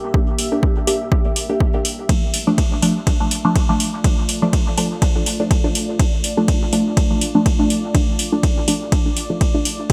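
Deep and hypnotic, this dub techno fragment rolls along at 123 BPM in 4/4 and D minor, with a light swing on the sixteenths. A punchy, overdriven electronic kick drum sits up front from 0.1 seconds, joined at 0.4 seconds by a soft vintage rhythm box playing analog hi-hat and ride cymbal, its hats carrying a metallic edge. Muted, detuned chord stabs with a filter pluck, fast attack and short decay are coloured by phaser and dub echo, and they pump against the kick. Beneath them, a dark, moody ambient pad holds sustained chords from the very start, its slow attack and long release softened by chorus and its own reverb, while it also breathes with sidechain pumping. The harmony moves from G minor to D minor at 2.1 seconds, and the whole passage, cut from a longer piece, carries a bright 1980s-style digital sheen with a light touch of room reverb.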